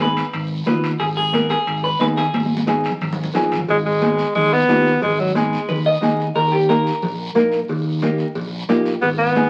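A clear alto saxophone with light vibrato and scooped notes takes the lead from 3.7 seconds, up front in this driving, danceable cumbia excerpt at 180 BPM in G# harmonic minor. Before it, a clean, picked semi-hollow electric guitar solos, joined toward the end by a drum fill, and a small, fingerpicked nylon-string guitar and a warm fingered electric bass carry the harmony from G#m to D#. Bright, high-tuned congas, ringing timbales and cowbell, and a raspy, dry guiro keep the groove, while studio reverb and the crackle of a very old 78 rpm record give the sound a vintage haze.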